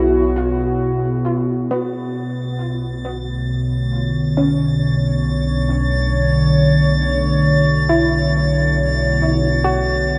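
A warbly, tape-like pad sits up front, holding sustained chords with a nostalgic, lo-fi, detuned character colored by chorus, phaser and its own reverb. This reflective, spacious ambient piece moves at 68 BPM in 3/4 in B dorian, shifting from C#m/B to Bm7 at 1.7 seconds. Beneath it, a soft, round pluck plays gentle arpeggios through lush chorus and tape echo, while a round analog bass holds a deep, evolving low note. From 2.2 seconds, a drifting glass-harmonics texture enters high above, its calm, glassy overtones carrying chorus and reverb. The whole production is dark, bathed in a wet cathedral reverb, and the recording is cut from a longer piece.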